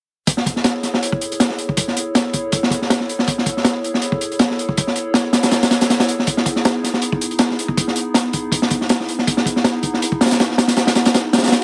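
Drum and bass with a jungle feel at 160 BPM, this dark, atmospheric excerpt sets a crunchy, saturated breakbeat kit with a punchy kick and high-tuned snare up front, entering at 0.3 seconds, against a warbling, detuned, nostalgic pad of chorused, reverb-soaked chords moving from Amaj7/E to Emaj7/B at 6.3 seconds, before an electronic swell sounds in the background at 11.6 seconds.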